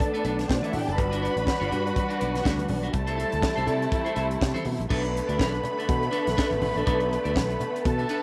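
A dark, bowed string section carries a second line over lush, up-front sustained string chords from the very start, alongside a clean, twangy picked electric guitar, a dry, tight funk drum kit with a high-tuned snare, and softly damped, low-tuned congas, while a growly, punchy fingered electric bass enters at 0.2 seconds to drive this glamorous, danceable disco excerpt at 122 BPM with a light swing on the 16ths through a Bm7, Gmaj7 and C6 progression in a small, lightly reverberant room.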